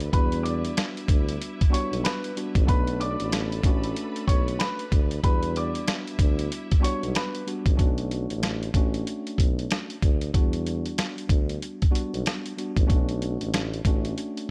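Moody and gritty, this boom-bap hip-hop cut from a longer piece rides a swung 94 BPM groove in B minor, moving between Em7 and Bm7 chords. Up front, a dusty, compressed sampler-style drum kit drives the track with a thumpy kick, a medium-tuned snare and hi-hat, while a mellow, smooth-topped tuba carries the bass line until about 14.1 seconds. A worn, slightly out-of-tune tine electric piano supplies clean, direct accompaniment throughout. Until about 7.4 seconds, an intimate upright piano with woody tone, audible action noise and slapback echo carries the melody. Through the opening 7.8 seconds, a bright, lush string section bows sustained chords with vibrato from a distance beneath it. After those parts fall away, the second section leaves the drums, tuba and electric piano to carry the groove in a studio reverb.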